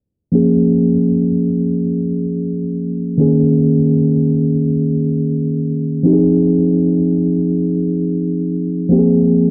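In free time, this moody, late-night R&B excerpt features a solo tine electric piano, mellow, clean and up front, moving through Bbm7, Eb7sus4, Fm7 and Ab69 from 0.3 to 9.5 seconds, tuned slightly flat to A4 = 439 Hz, with a filter sweep throughout, a cassette-tape character and a moderate studio ambience.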